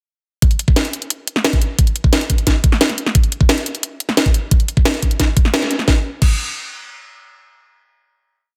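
A knocking, tape-warm electronic kick sits up front with an overdriven drum and bass kit of cracking snare, bright hats and crash, driving a short, mechanical, futuristic drum and bass drop from 0.4 seconds to a band accent at 5.5 seconds and a final hit at 5.9 seconds, all in light digital ambience under a dense, heavily limited master.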